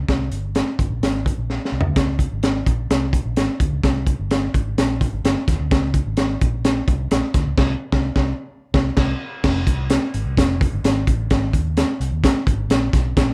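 A gritty, saturated drum kit sits up front in a moderate club reverb, its dark cymbals, high-tuned snare and punchy kick giving this short cut of uptempo 1960s-style soul a passionate, driving push. Underneath, a vintage muted fingered electric bass with a round, foam-muted tone holds the low end throughout. A drum fill arrives at 1.5 seconds, and a band accent lands from 7.6 to 9.4 seconds before the final stretch.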